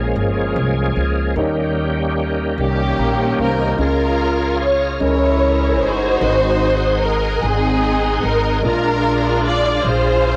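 A home cassette recording with a small, lightly reverberant room sound frames this soulful, uplifting gospel excerpt in Ab major, moving slowly at 50 BPM in a straight 6/8. A bright, shouting tonewheel organ holds sustained chords throughout, lightly overdriven and colored by chorus vibrato and a fast rotary speaker, while a smooth, vintage grand piano sits in the background playing accompaniment, both carrying the character of cassette tape. Up front, a woody pizzicato upright bass on steel strings anchors the low end across the whole clip. At 2.6 seconds a lush studio string section enters with the melody, bowed as an ensemble with expressive vibrato and portamento and a smooth top. The harmony moves from Bbm7 and Eb7 into Db6 at 3.8 seconds and Dbm6 at 5.0 seconds, then on through Ab7 to a closing Bb7.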